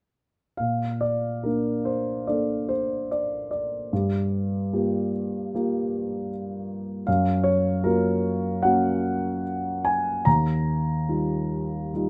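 Freely flowing rubato with uneven beats carries this calm, warm excerpt of lyrical classical solo piano, where a dark, mellow concert grand with deep bass sits up front in a dry, close and detailed sound, moving through Bbmaj7, Gm7, Gbmaj7 and Ebadd9 before a brief fill at 11.9 seconds.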